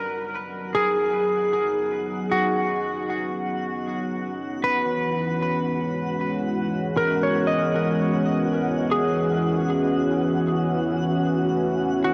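Drenched in a huge ambient reverb with a 6.9-second tail and passed through worn, warbling cassette tape, this short cut from a longer ambient piece drifts at 77 BPM in a straight 4/4, feeling weightless and warm. A smooth, dark analog pad with sawtooth and triangle tones and a sub octave fades in up front, holding sustained chords under a gentle chorus. Also up front, a bright, clean semi-hollow electric guitar picks compressed arpeggios, coloured by harmonic tremolo and delay. From the very start, a twinkling granular texture of sparkling FM tones and octave-up shimmer rises softly in its own reverb, and from 1.0 s a nasal, evolving analog drone fades in from the background, its pulse-width modulation and moving notch shimmering through chorus. The harmony settles from G#7sus4 to C#m at 4.6 s and opens onto Amaj7 at 10.9 s, and the tape's pitch drift keeps the whole haze gently unsteady.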